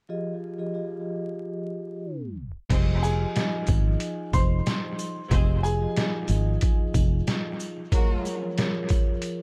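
A dry, mellow vibraphone with soft mallets and slow motor vibrato opens this dark, tough boom-bap hip-hop excerpt in F minor at 92 BPM over an Fm9 chord, a tape stop at 2.1 seconds giving way to gritty, pitched-down sampler-style drums with a thumpy kick from 2.4 seconds. A round, foam-muted fingered electric bass up front, lush bowed string stabs and jingly sleigh bells in the background follow at 2.7 seconds, and a woody, slightly detuned upright piano melody arrives from 3.0 seconds, all wrapped in an echo-heavy mix with vinyl crackle before a shift to Gbmaj7 near the end.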